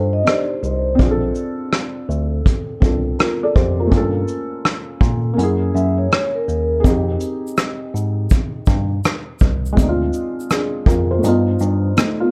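A felt-muted upright piano opens this nostalgic, reflective lo-fi hip hop excerpt, its soft, mellow chords carrying a cassette-tape haze, while a bell-like tine electric piano plays the bass line in a bright, clean voice and a dark, metallic vibraphone rings briefly above with slow motor vibrato and tape echo. The harmony drifts through lush jazz colours such as Bbmaj9, Gm7b5 and F#9, moves to Fm9 and Dm7b5, and ends on G7b13. A vintage brush drum kit comes in at 0.3 seconds, its punchy kick, hi-hat, rim click and shaker set up front with a rolled-off top and gritty 12-bit sampler texture, all swung on a relaxed 4/4 groove. The vibraphone returns for a short second phrase at 5.7 seconds, and a grainy egg shaker slips in quietly in the background at 6.9 seconds. The intimate, short-sustained piano and the up-front electric piano sit in a dark, warm production with light reverb, giving the fragment a close, warm feel.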